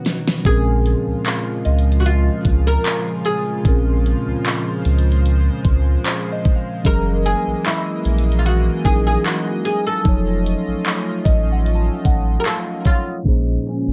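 Bathed in a low-pass-filtered digital ambience, this sensual, late-night contemporary R&B excerpt pairs a knocking, up-front electronic drum kit, with fat snare, hi-hat and handclaps opening on a fill, with a deep, round sine sub bass arriving at 0.5 seconds alongside a bright, woody, plectrum-plucked oud melody trailed by delay, while a mellow tine electric piano accompanies and takes a fill at 11.7 seconds, a shimmering retro pulse-width pad sustains chorused chords, and a soft FM bell with chorus, phaser and delay sits in the background from 1.3 seconds.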